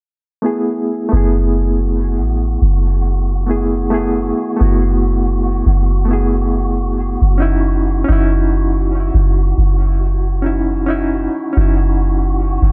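Trip hop at a slow 69 BPM with a swung sixteenth-note feel in F# dorian, this smoky, dark excerpt is cut from a longer piece and moves from F#m11 to C#madd9/F# at 7.4 seconds. A reedy, bright electric piano carries the accompaniment up front from 0.4 seconds, colored by tremolo, tape echo and a low-pass filter sweep, while a deep, round 808-style bass enters at 1.1 seconds with a fast attack and decaying notes. At 1.7 seconds a faint, breathy wind-like noise texture holds a sustained F#4 in its own reverb, all set in a dry, echo-heavy mix.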